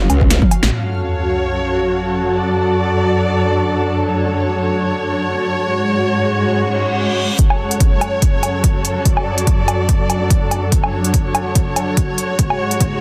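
Heavy and chaotic, this half-time wobble dubstep excerpt at 144 BPM in F# minor opens on a blurred granular cloud pad with its own reverb, pumping beneath a dark, bowed chamber string section that enters at 0.7 seconds and holds F#m, D/F# and C#sus4/G# chords. A short drum fill from the big-room dance kit and punchy electronic kick leads to a brief stab of metallic, saturated wobble bass with chorus and overdrive at 0.6 seconds, then an electronic sub drop and reverse cymbal frame a filter-swept stretch. At 7.4 seconds the kit and kick return up front with crisp, low-passed hats and snare for a build-up, all within a dense, heavily limited master and moderate room reverb.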